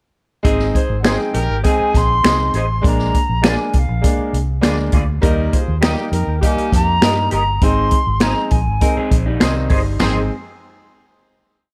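Uplifting and warm, this complete uptempo 1960s-style soul piece in Ab major moves at 100 BPM, with a swinging big-band drum kit laying down a backbeat groove over a punchy kick, a dark, round, foam-muted electric bass playing a syncopated line with ghost notes and chromatic approaches, a clear grand piano in close-voiced quarter-note chords, a smooth-topped horn section playing short riffs, finger snaps, slightly broken-up lo-fi guitar chops on the backbeat with ensemble chorus, and a pure, distant concert flute carrying an expressive, vibrato-rich motif melody from 1.0 s, before a second guitar adds short fills in sixths at 8.8 s and the piece settles on a final chord at 10.0 s in a small, lightly reverberant room.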